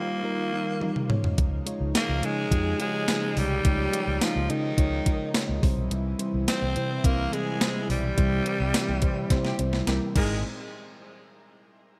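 A breathy, scooped alto saxophone carries the melody through shimmer reverb and digital delay in this romantic, nostalgic 1980s-style pop excerpt at 106 BPM, over a round FM electric piano, a detuned sawtooth analog pad in the background, an overdriven 12-bit drum machine with gated reverb and a thumpy kick that enters at 0.8 seconds, a dark, foam-muted fingered bass from 1.4 seconds, a growling tenor saxophone second line from 2.0 seconds, and tight, very quiet horn stabs in the closing moments, all framed by bright 1980s-style digital production.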